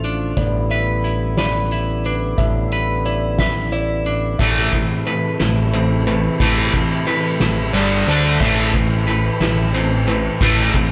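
This brooding, melancholic post-rock passage, cut from a longer piece, opens with a reedy, breathing harmonium holding sustained chords beneath a clean semi-hollow electric guitar playing arpeggios, bathed in spring reverb and slapback echo. Further back, a felt-muted upright piano adds soft, intimate arpeggios of its own with a slapback echo. A growling, overdriven fingered bass and a soft-mallet drum kit, with its boomy kick and roomy, distant sound, carry the slow 6/8 pulse. At 4.4 seconds a bright, scooped, distorted electric guitar enters up front with a riff, and the music begins to build until the end. The whole is set in a concert-hall reverb that gives it a big arena sound.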